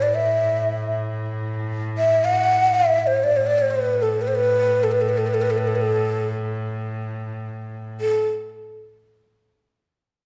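The recording is bathed in the lush reverb of a recital hall, with the ney close-miked and up front while the cello sits lower in the mix. This passionate, stately Arabic maqam piece unfolds in free time in A maqam rast, tuned to A4 = 438 Hz, and it is cut from a longer performance. The breathy, mellow end-blown reed-cane ney carries the melody between A4 and F#5, its expressive tongued phrasing colored by vibrato. Beneath it, a single bowed cello holds an earthy drone on A2 with light vibrato, sounding until 8.0 s. The ney continues on briefly to 8.3 s as the music passes into a new section.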